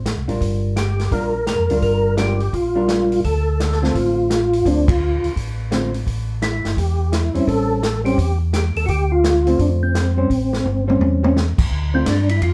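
A percussive tonewheel organ carries the melody with a round, clean tone and third-harmonic percussion, its chorus vibrato and slow rotary speaker giving a smoky, late-night feel to this swung soul jazz organ trio cut from a longer piece at 170 BPM in D minor. A mellow, dark tonewheel organ bass holds the low end under a clean, picked hollow-body jazz guitar accompaniment and a vintage acoustic drum kit with a tight kick and rolled-off top, all heard from further back in a moderate studio room. The band hits an accent at 4.8 seconds over a Gm7, Dm7 and A7#9 progression, and a drum fill at 10.6 seconds leads back to Dm7.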